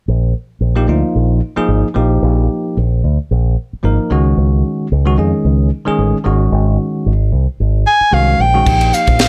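A fingered electric bass run through an envelope filter opens this short excerpt of funky, slick electric jazz fusion at 112 BPM in 4/4, with a light swing on the sixteenths. Its tone is bright, punchy and direct, sitting up front, and a bell-like tine electric piano joins at 0.8 seconds with a clean, bright accompaniment. The two move through suspended harmony, from Bb7sus4 to Dbsus24 and Ab7sus4 before settling on Bbsus4. At 7.9 seconds a soprano saxophone steps forward with a smooth-topped, jazz-style solo line carrying vibrato and a plate reverb sheen. A tight funk drum kit arrives at 8.7 seconds, dry and airy with a high-tuned snare, punchy kick, hi-hat, ride and crash, just as the passage breaks off inside a lightly reverberant room.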